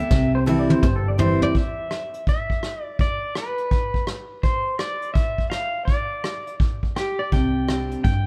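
Heard through light reverb from further back in the room, this heartfelt, down-home swinging honky-tonk and classic country snippet puts a twangy, fingerpicked pedal steel melody with slide and volume swells up front throughout, joined briefly by a brighter second steel line. A punchy brushed drum kit plays a drum fill under the opening C chord and carries on through the whole snippet, while a jumbo acoustic guitar with finger squeak and a dark, foam-muted round electric bass join the opening C chord, drop away at 1.6 seconds, and return on a closing Csus2 at 7.3 seconds.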